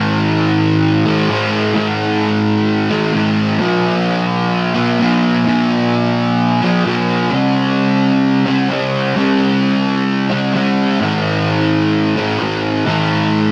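Rock excerpt with a dreamy, wistful mood, carried entirely by a picked, double-tracked electric fuzz guitar placed up front, its distorted tone dressed in a lush chorus and light reverb as it moves through A5, B5 and C#5 power chords before returning to A5 at 11.0 seconds.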